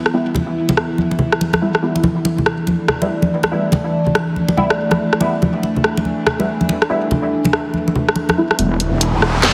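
A wobbling, saturated wobble bass on a low E arrives at 8.6 s, heavy and up front with chorus, just as the harmony settles onto E minor at the close of this short cut from a longer piece of deep dubstep. Before that, the brooding mood rests on an overtone-sweeping drone built from sawtooth, sine and triangle waves, wave-folded and resonant with a moving notch, sustaining chords on an open E fifth from the very start under chorus and its own reverb. Muted, deep dub chord stabs with a filter pluck and short decay are treated with phaser, ensemble chorus and dub echo. A layered, tape-tinged garage drum kit with a cracking snare, handclaps, hi-hat and rim click drives the 142 BPM half-time groove with a 62% swing on sixteenths, joined up front by close, dry congas played with hard hands and sent into dub echo. An electronic riser enters at 8.8 s, while a moderate echo chamber and heavy multiband compression give the whole a dense, radio-like sound.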